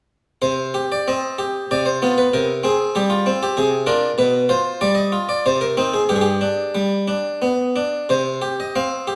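A single harpsichord, close-miked and up front, carries this flowing, introspective baroque-style suite movement in C minor, playing alone from 0.4 to 9.2 seconds. Its plucked tone is round and full, drawn from one set of strings in the Italian style, and it spans G2 to F5. The movement sits in 3/4 at roughly 88-98 BPM, and the rubato lets the phrases breathe freely. The harmony moves from C minor through a suspended colouring and a bare fifth, then Dm7b5 over C and G7 over B, before returning to C minor and G and settling on C5. The close, dry pickup of the instrument is set inside a stone room whose 1.3-second reverb lends a resonant, wet halo, and the passage is cut from a longer piece, tuned to A4 = 444 Hz.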